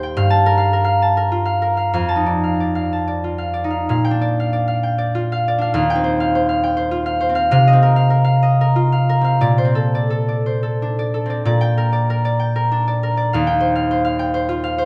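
A ringing, fingerpicked concert harp sits up front as the sole voice of this serene, dreamy classical excerpt, moving in an unhurried 3/4 with rubato across a range from Eb2 to A5 through lush chords such as Gm9, F13 and Bbmaj9, all set in a moderate recital hall reverb with a rounded, mellow top end.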